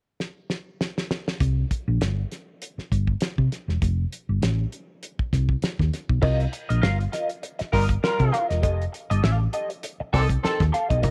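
Funk in C dorian at 100 BPM, with a 16th-note swing that gives this hypnotic groove a loose, rolling feel. A damped 70s drum kit opens with a fill at 0.2 seconds, its fat snare, tight kick and dark cymbals sounding dry and close, with a rolled-off top end. The hollow-body short-scale bass enters at 1.4 seconds, round and amped, moving between C5 and F9 harmony before the groove shifts to Cm7 and F9. At 6.2 seconds a clean electric guitar joins with a scooped, compressed tone colored by wah and ensemble chorus, and a mellow horn section follows briefly as a second line, punchy yet distant with light vibrato. The drums, bass and guitar sit up front in a small room ambience, and the passage is cut from a longer piece.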